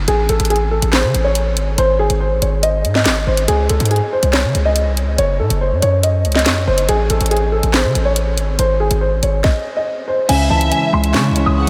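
A half-time drill groove drives this ominous, tense hip hop excerpt, its electronic kit pairing a hard-clipped kick and sharp snare with bright hi-hats, handclaps and crash cymbal. Up front, a distorted 808-style bass hits with a heavy, aggressive attack and a noisy edge before decaying. A baby grand piano carries the melody in a dark, worn, boxy tone, filtered and echoed with delay, its action noise adding an intimate, close feel. The whole band stops at 9.4 seconds, and when the music returns at 10.3 seconds a distant, lush violin section adds a bowed second line with expressive vibrato, while a soft upright piano muffled by thick felt plays the accompaniment. A deep, moody analog pad with detuned, wave-folded layers and chorus slides in behind them at 10.7 seconds. A huge ambient reverb soaks the mix in a dreamy haze.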